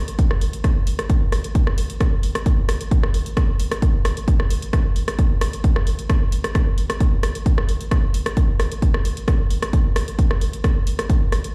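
Played through a big sound system in a bare room and caught with large studio reverb, this dark, intense techno excerpt has a heavy presence. A layered electronic kick drum sits up front with tape-warm weight, entering at 0.2 seconds and driving a straight 4/4 pulse. Behind it, a produced techno drum kit adds hi-hat and rim click textures, its hats warm and re-recorded in a small room, running until 11.5 seconds.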